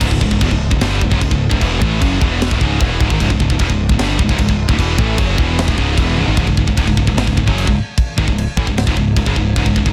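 A straight 4/4 pulse at 151 BPM drives this aggressive, dark heavy metal cut in C# minor, with a tight acoustic drum kit sitting up front, its tight kick, medium-tuned snare, toms, crash and china cymbal carrying a mid-forward, rolled-off top. Two bright high-gain distorted guitars play the riff in the background alongside a very quiet, double-tracked crunchy overdriven guitar, while a growling picked electric bass with overdrive sits low underneath. A drum fill at 6.2 seconds leads into a shift from C#m to a C#5 power chord at 6.4 seconds, all captured dry in a dense, heavily limited modern master.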